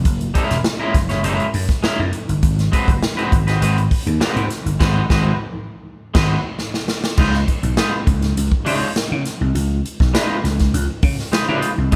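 This short funk excerpt has a live, one-room sound with light reverb, the band sitting close together at a strutting, playful 101 BPM in straight 4/4 and Db mixolydian. A vintage slap bass opens at 0.0 seconds, growly and amped with a punchy attack, ranging from Fb1 up to Db3. The drum kit, a swinging big-band set, comes in at 0.1 seconds with a polished, airy hall character, dark cymbals, a medium-tuned snare and a punchy kick, using crash, hi-hat, kick and snare up front in the mix. Close behind at 0.3 seconds, a picked electric guitar at the edge of break-up adds twangy, slightly broken-up accompaniment between Ab3 and Db5, also sitting forward. The harmony moves from Gb9 to Ab7#9, and a band accent, with a drum fill in its final moments, leads into a new section at 7.2 seconds, where the chord settles on Db9 as the piece carries on beyond the cut.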